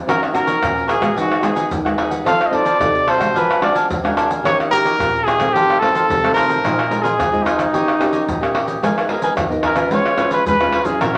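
A straight 4/4 samba and choro groove at 110 BPM comes from a tight surdo, egg shaker, pandeiro and tamborim played with soft hands, their vintage, band-limited sound sitting up front, while a fingerpicked classical nylon-string guitar and a crisp, picked cavaquinho fill in the harmony in Eb minor. Over them a clear, jazz-style trumpet carries the solo melody with light vibrato, bittersweet and nostalgic, moving through chords such as Ebm7, F7 and Bb7sus4 before a new section opens on G#madd9 at 8.8 seconds. A large studio reverb gives the ensemble a roomy sheen, and the passage is cut from a longer piece.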